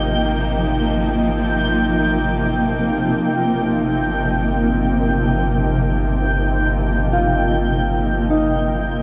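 Serene and warm, this ambient excerpt drifts in free time in Eb major, moving from Abmaj7 to Eb/G at 3.2 seconds beneath a wet plate reverb and an echo-heavy mix. A shimmering, ethereal pad sits up front with detuned chorus and octave-up shimmer, while a bright, ringing concert harp plays thumb-plucked arpeggios through analog delay and shimmer reverb. Underneath, a deep, round sine sub bass holds the low end, and a reversed, dreamy granular texture hovers high at G6 throughout the 9 seconds.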